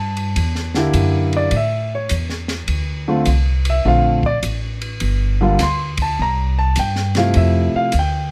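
A relaxed jazz piano trio swings easily in 4/4, cut from a longer piece and running about 8.3 seconds. An intimate concert grand carries the melody up front, its deep bass, long sustain and audible action noise bathed in plate reverb, while a woody pizzicato upright bass on steel strings sits close beside it. From 0.2 seconds a compact cocktail kit, dry and tucked further back, adds dark cymbals, a high-tuned snare, a tight kick and hi-hat under a progression that moves from Em7b5 through Dm7 to Fmaj7.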